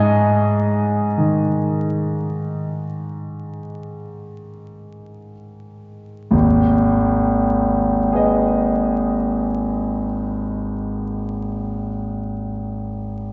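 A very slow, rubato pulse in 4/4 drifts between 30 and 41 BPM, easing back through the first 6.3 seconds before a new passage begins. This is a wistful, hazy impressionist classical piece for solo piano in G# minor, cut from a longer work and lasting 13.3 seconds. A concert grand carries everything on its own, spanning G#1 to G#5, its tone clear and open with deep bass, placed up front. The harmony rests on a bare G#5 at the start, then settles onto G# minor at 6.3 seconds as the second passage unfolds. A church reverb with a 3.8-second decay bathes the piano in a resonant, lingering space. Vinyl crackle and a dulled top end, with nothing above 7.7 kHz, lend the recording an aged, softly veiled quality.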